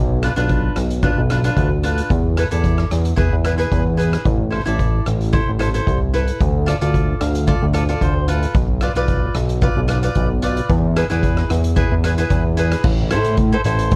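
A fat, saturated analog bass opens this calypso excerpt in A minor, sitting up front with a nasal, detuned sawtooth edge, before a bright, crisply picked cavaquinho with plate reverb and a street-band drum kit of boomy kick, rim click, hi-hat and dark crash cymbals join at 0.2 seconds. At a straight 112 BPM the mood is bittersweet and moody, moving through diminished and suspended chords toward A minor, with a cavaquinho fill from 6.9 to 8.6 seconds and a brief new section arriving at 12.8 seconds. The whole recording is dry and carries the warble and pitch drift of worn cassette tape along with lossy compression artefacts.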